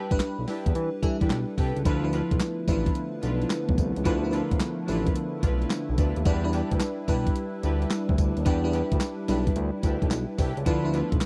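A clean, sampler-style 12-bit drum machine sits up front with a thumpy kick, a medium-tuned snare, handclaps, hi-hat and tambourine, driving a slick, confident new jack swing groove at 109 BPM in D dorian with a 67% swing on the 16ths. A smooth, sawtooth-edged synth bass with vibrato rides close beside it, while a lush, dreamy FM electric piano with chorus and phaser and soft bowed string stabs move between Em7 and Dm69. At 1.9 seconds a detuned analog pad enters in the background with slow-attack sustained chords, all within a dry, close 1970s-style studio ambience in this short cut from a longer piece.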